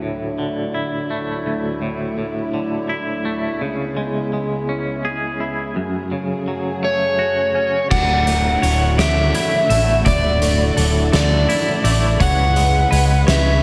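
Over a straight 6/8 lilt, this soaring, euphoric post-rock excerpt opens with a woody, sul tasto string section holding sustained chords beneath a bright, twangy guitar arpeggio treated with tremolo, slapback echo and analog delay; an overdriven slide guitar carries the melody from 6.8 s, and at 7.9 s a background clean guitar arpeggio with spring reverb, a round hollow-body bass and an oversized low-tuned drum kit with a fat snare, punchy kick and dark cymbals join, the mix bathed in lush hall reverb for a big arena sound.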